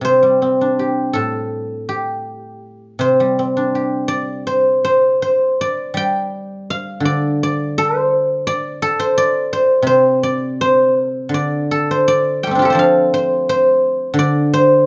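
Chinese traditional solo plucked-string music in a contemplative, elegant mood, this short excerpt, cut from a longer piece, features a lone guzheng played with fingerpicks, its ringing, silvery acoustic tone placed up front under light reverb, moving in a rubato 2/4 around 78-88 BPM in D yu mode across two sections, the second beginning at 5.6 seconds, with a top end that stays soft and dark.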